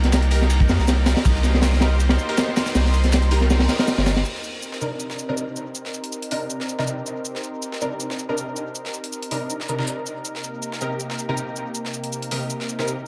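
Straight breakbeats drive this dark, frenetic drum and bass and jungle excerpt, where a crunchy, up-front acoustic kit with a tight kick and high-tuned snare pounds beside a deep, saturated sub bass through the opening drop until 4.2 seconds, while a gritty, high-passed sampler-style kit with dub echo, a lush, warbling detuned pad and bold, punchy orchestra-hit-like stabs with phaser and a filter sweep carry on over Eb and Cm7 chords in an echo-heavy mix with moderate spring reverb.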